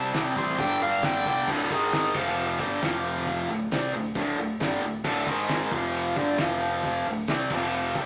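Classic rock with a swaggering, gritty mood, moving at 134 BPM in a straight 4/4 and tuned slightly below standard pitch, this short excerpt is cut from a longer piece. A biting, bright lead guitar with overdrive opens with a brief solo melody in the upper register, lasting only until 1.5 seconds. Underneath and throughout, a double-tracked overdriven electric guitar drives the riff up front, while a punchy, amped picked bass sits in the background. From 0.1 seconds a cloth-damped, thuddy acoustic kit of kick, snare, hi-hat and crash adds a fat snare, tight kick and dark, muffled cymbals with a saturated, lo-fi, rolled-off top. The band sounds as if playing live in one room, heard through a small speaker, with a moderate large-studio reverb around it, and the chords circle among power shapes on C, G, D, G# and F.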